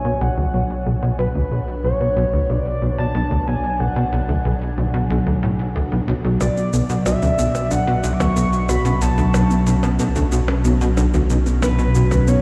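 A straight 4/4 pulse at 92 BPM is driven by a tight, punchy sequencer bass riff sitting up front, its sawtooth and square tones ring-modulated and coloured by lush chorus and tape echo. Alongside it, a deep, round sine sub bass holds B1 as it fades in, together with a fading-in wavetable pad whose detuned unison chords morph brightly through ensemble chorus, built-in reverb and phaser over a Bmadd9 harmony. Above, a shimmering, retro pulse-width lead carries the B minor melody with vibrato, chorus and tape echo. At 6.4 seconds, electronic percussion blips and a tape-warm shaker enter with their own echo, followed at 6.6 seconds by a gentle, full-bodied pluck playing dark arpeggios in the background. This mysterious, expansive excerpt of sequencer-driven space music is bathed in a huge ambient reverb, heard as if through a big sound system in a bare stone room.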